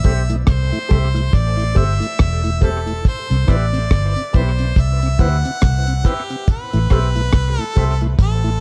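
Dark, warm studio reverb frames this meditative, hypnotic roots reggae fragment over Am7 and Cmaj7, where a bright harmonica carries the melody with light vibrato and tape echo, a twangy envelope-filtered electric guitar with tremolo sits in the background, a smooth tonewheel organ with key click, slow rotary speaker and dub echo fills the middle, and a round, foam-muted vintage bass and a dry, up-front reggae drum kit of tight kick, hi-hat and rim click anchor the swung groove.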